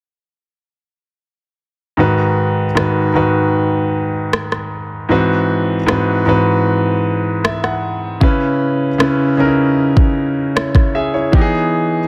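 A straight, unhurried 4/4 pulse at 77 BPM sets a longing, late-night mood in this short contemporary R&B passage in G# minor, cut from a longer piece. A clear, intimate grand piano opens at 2.0 seconds as accompaniment, ranging from G#2 to F#5, its natural tone carrying audible action noise close up front. At 2.8 seconds a smooth, produced, tape-warm electronic drum kit joins with a soft kick and rim clicks, its snare touched by soft clipping, and it sits up front beside the piano. The harmony moves from G#m7 through G#7alt and C#m7 to Emaj7, and the piano adds a brief fill starting at 7.0 seconds before the change to C#m7. Light studio reverb surrounds the parts, and the master is dense and heavily limited in a modern style.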